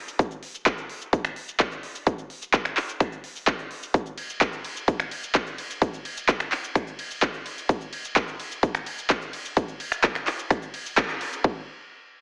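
EDM drop with an anthemic, euphoric lift, built from a punchy, layered electronic kick under a big-room kit of cabasa, finger snaps, handclaps, crisp hi-hat and ride cymbal, both parts tape-tinged and up front after being re-recorded in a large room, all squeezed through a heavily compressed AM-radio sound with light reverb before a band accent at 11.0 seconds in this short cut from a longer piece.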